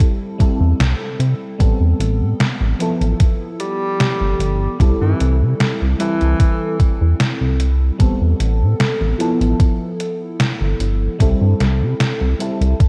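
A mellow FM electric piano with a soft pad layer, shimmering through phaser, lush chorus and tape echo, opens this dreamy, faded vaporwave fragment at 75 BPM in C major alongside a thumpy, overdriven electronic kick and the hi-hat and snare of a detuned 8-bit drum machine, both up front. A glossy, dark chorused synth bass joins at 0.6 s beneath the C6, Am9 and G13 chords, while a breathy tenor saxophone with light vibrato and scooped notes, trailed by tape echo, sings a brief low line between 3.6 and 6.8 s, the whole recording sitting in light reverb and a cassette-tape haze.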